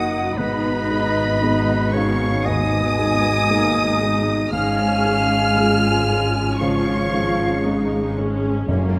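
Tender and uplifting, this slow, rubato cinematic film-score excerpt at 58 BPM sets a lush, vibrato-rich violin section melody over a second violin line, airy flute group, clear solo clarinet, felt-muted upright piano with audible action noise, focused violas, dark horn chords, smooth cellos and rich double basses moving from G#m to C#/G#, with round soft-mallet timpani entering only at 8.7 seconds in a moderate scoring-stage reverb.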